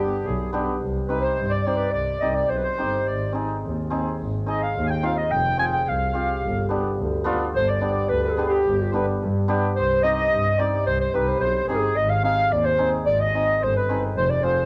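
A dark, smooth-topped clarinet leads this festive, soulful klezmer excerpt in G phrygian dominant at 108 BPM in 2/4, taking a classical-style solo for the first 7.5 seconds, while a reedy, slowly beating accordion carries a second line and a shimmering, ringing hammered dulcimer accompanies, all three with a cassette-tape color, above a veiled, bowed, muted double bass with vibrato, the tempo pushing faster throughout a homey cassette recording bathed in moderate spring reverb.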